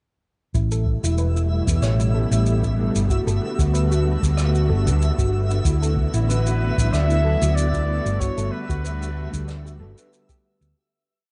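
A round, punchy hollow-body electric bass plays a syncopated riff up front in this blissful, smooth sunset chillout piece at 94 BPM with a light 16th-note swing in G major, over a deep, overdriven electronic kick, a distant shaker and rim click, a silky string machine pad with ensemble chorus, a soft pluck arpeggio with lush chorus and delay, a twinkling granular shimmer held high, and mellow, dark guitar chord stabs entering at 1.7 s, while a distant flugelhorn adds call-phrase motifs from 6.3 s to 9.8 s, carrying into the fade-out that begins at 7.4 s in a rough, small-room home-demo mix.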